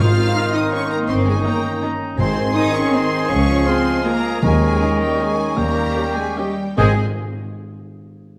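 A moderate scoring-stage reverb lends this festive, elegant orchestral ballroom waltz in Ab major its spacious sheen, as a lush violin section with expressive vibrato carries the melody over a rubato 3/4 that ranges from 140 to 177 BPM. Around it sit an airy, hollow flute, a distant oboe, a background second violin section and a very quiet viola section entering at 0.3 s, while a bassoon, mellow French horns, a very quiet trombone section and vintage-toned trumpet stabs fill out the harmony. Underneath, a focused double bass section, a close cello section and round, soft-mallet timpani anchor the low end through a passage cut from a longer piece, which moves from Ab through Db and Eb7sus4 before returning to Ab at 6.8 s.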